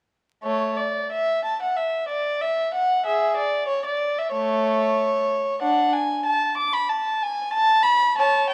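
A crackle of vinyl and a moderate recital-hall reverb frame this short, warm-sounding fragment, cut from a longer baroque-style suite movement for unaccompanied violin. A single bowed violin plays alone from 0.4 to 8.5 seconds, its dark, nasal, reedy gut-string tone placed up front in period style. The rubato phrasing gives the classical passage a serene, flowing mood.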